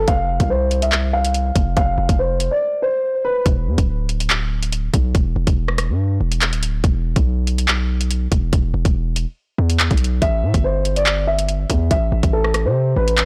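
A dark, mellow concert grand piano with a vintage, filtered tape-echo tone opens this tense half-time drill excerpt at 142 BPM in E phrygian, over a heavy, aggressive distorted 808-style bass and an up-front electronic drum kit of hard-clipped kick, metallic hi-hats, handclaps and rim clicks that drops out briefly at 2.6 seconds, with the piano returning at 10.2 seconds amid a blown-out, overdriven digital ambience.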